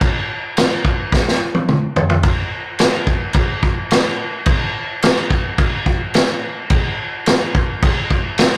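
Rock drum excerpt at 108 BPM in a straight 4/4, raw and swaggering, with a vintage acoustic kit playing crash cymbal, kick, snare and toms up front in a rough rehearsal-room recording with tube saturation and light reverb, its mid-forward sound marked by a punchy kick, medium-tuned snare, dark cymbals and a rolled-off top, and a drum fill arriving at 1.1 seconds.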